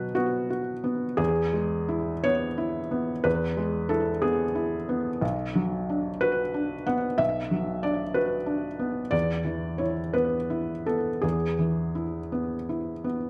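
A lone felt-muted upright piano opens this 13.3-second fragment of a longer neoclassical minimalist piece, its muted, mellow tone sitting close and up front. The mood is intimate and wistful, moving in a slow, rubato 6/8 at roughly 54 to 62 beats per minute counted in dotted quarters. Played solo across a range from B1 to F#5, the piano moves from a bare B5 chord to E at 1.2 seconds, then through B minor at 5.2 seconds and back to E at 9.1 seconds. The thin felt gives each note a short sustain, and the mechanical action noise of the instrument stays audible throughout. A slapback echo shadows the piano inside a modest booth ambience, giving the whole a dry, close sound in the manner of a 1970s studio recording.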